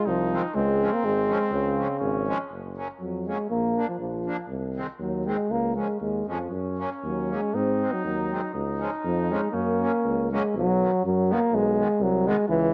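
A lo-fi home cassette recording with springy reverb and a dulled top end captures a jolly, bouncy alpine folk dance-band snippet in a lightly swung, rubato two-beat, where a warm, vintage-toned euphonium carries the melody up front over a roomy tuba bass with light vibrato and a reedy, slowly beating accordion, while a mellow, smooth-topped trumpet with tape colouring adds a second line from 0.0 to 2.5 seconds and again from 6.5 to 10.3 seconds.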